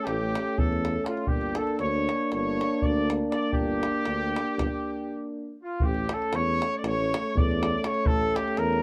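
In a straight 9/8 at 239 BPM in eighths, this restless, virtuosic Balkan brass band excerpt sets a warm, up-front cornet melody with plate reverb over a clear trumpet second line and two vibrato-tinged euphoniums in accompaniment, one roomy and one vintage, while a mellow tuba carries the bass and a tight davul drives the percussion, moving between A and G minor through a break from 4.7 to 5.8 seconds before the opening section returns.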